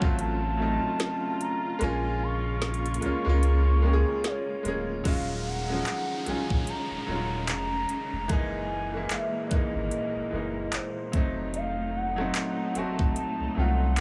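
Over a swung sixteenth-note trap groove of knocking kick, woody snare, metallic hats, handclaps, rim clicks and crash, with the overdriven kit up front and its kick dropping out from 1.8 to 5.1 seconds, this moody, late-night contemporary R&B excerpt sets a bright, short-sustain baby grand piano and a thick, saturated sub bass alongside lush bowed symphonic strings, while a smooth sine lead glides with portamento, chorus and digital delay, and an electronic downlifter sweeps through from 5.1 to 11.5 seconds, all in a small, dry room.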